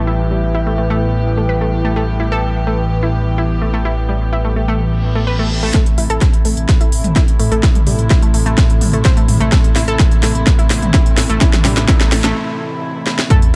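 Melodic techno at 127 BPM in A minor, hypnotic and driving, opens with dark, bowed sul tasto strings holding sustained chords over a deep, rumbling detuned saw bass, a nasal overtone-sweeping drone, a lo-fi, nostalgic tape-like pad in the background and a round, vintage analog pluck whose arpeggios carry chorus, dub echo and a filter sweep, all but the drone pumping to the sidechain, until a very quiet reverse cymbal at 5.0 seconds leads the punchy, up-front kick and a techno kit with cracking snare, smooth hats and toms into a build-up at 5.7 seconds, where the chords shift from Em/A to Am, the strings take a filter sweep and a drum fill runs toward a break and an impact at 13.3 seconds.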